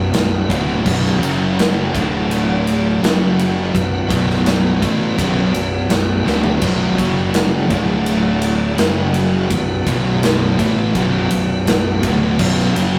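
A rough rehearsal-room recording with tube saturation and little reverb frames this heavy, brooding stoner and doom metal excerpt at 83 BPM in B minor, where an up-front acoustic drum kit with a punchy kick, bright cymbals and a fill at 6.3 seconds drives riffs from two dark, very quiet fuzz guitars and a sludgy, double-tracked overdriven guitar in the background; a growly fingered bass with fuzz and overdrive anchors the low end, and a piping tonewheel organ with key click, chorus vibrato and a slow rotary speaker sustains chords over a cycle of Bm, F#5 and D5.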